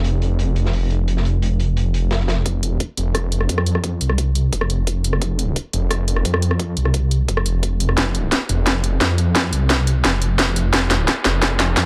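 Dark and tense, this excerpt of technical drum and bass pits a growling, distorted sawtooth bass up front against a cracking, overdriven drum-and-bass kit with bright hats and rim clicks, while a gritty, rolled-off breakbeat kit plays only until 2.4 seconds and a knocking electronic kick arrives at 2.5 seconds in the background for a build-up that ends in a drum fill from 8.0 seconds, all under light reverb in a dark production.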